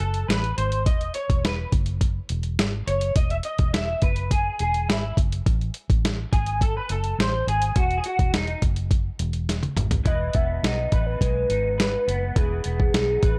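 Indie and bedroom pop excerpt at 104 BPM in E major, dreamy and nostalgic, built on a gritty, up-front sampler-style drum kit with a thumpy kick and a dark, round, foam-muted fingered bass. A slightly broken-up, lo-fi electric guitar through a small old amp carries a clean solo over F#madd9 and E chords with chorus and warbly pitch drift, until a drum fill at 9.5 seconds leads into an Emaj7 section. There, at 10.1 seconds, a mellow, warbling synth lead enters with vibrato, analog chorus and delay, all in a dry, gritty hardware sound.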